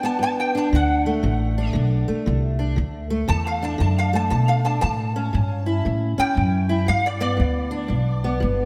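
Acoustic country blues with a rollicking, swaggering swing at 117 BPM in D major, this short excerpt has a metallic, nasal resonator slide guitar played with a steel bar taking the melody up front through ensemble chorus and tape echo, over a woody fingerpicked steel-string acoustic guitar with old strings and analog chorus, while a pizzicato upright bass enters at 0.7 seconds, all set in a dreamy, lush hall reverb as the harmony moves from G through D and A back to G.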